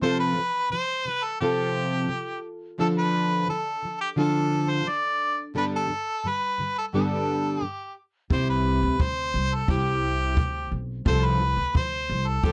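Light reverb surrounds this acoustic pop excerpt, cut from a longer piece with a heartfelt, carefree mood in a straight 4/4 feel. A punchy, vintage-toned harmonica carries the melody up front from the start, singing with vibrato and scooped notes in a pop style, touched by a slapback echo. Beneath it, a double-tracked nylon-string guitar with fresh strings fingerpicks a dark, classical-leaning accompaniment, also placed close to the listener. The harmony moves from F/C through Dm and Gadd9 before settling on C and returning to F/C. At 8.3 seconds a woody, thumpy pizzicato upright bass and a distant, boomy kick drum played with brushes enter together, adding a roomy low end beneath the harmonica and guitar.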